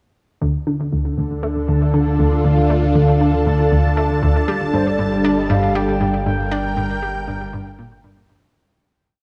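A bright, nasal analog pluck sits up front from 0.4 seconds, cycling a five-step sequence that drifts against the bar, its fast, short filter pluck treated with chorus and tape echo. This is an expansive, cosmic piece of ambient, sequencer-driven space music in G minor at 118 BPM in a straight 4/4. Alongside it from 0.9 seconds, a lush, thick unison pad of detuned sawtooth and square waves sustains slowly shifting chords through chorus and phaser, moving from Dm to Gmadd9 at 4.5 seconds. A deep, round sine sub bass holds the roots, fading in across the whole span. At 4.7 seconds a smooth, expressive synth lead enters with a dark, vibrato-laden free melody under subtle chorus and tape echo. The whole is bathed in a huge, wet ambient reverb with a long tail, and the track fades out toward its close.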